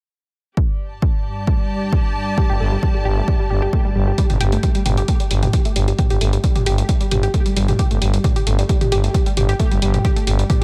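Driving peak-time techno at 133 BPM in 4/4, dark and hypnotic, this excerpt opens at 0.6 seconds with a punchy, tape-warm electronic kick up front and a rich, bowed studio string section with vibrato fading in, joined at 1.0 seconds by a very quiet, deep sawtooth ambient pad drone on G2; the strings pump and the pad sustains until 4.2 seconds. At 2.4 seconds a round, nasal analog pluck riff between G3 and G4 enters, colored by chorus, phaser and tape echo, and a moment later a thick, growling FM bass on G1 arrives up front with sidechain pumping. From 4.2 seconds a layered techno kit with warm hats and toms, re-recorded in a large room, fills out the groove under light reverb.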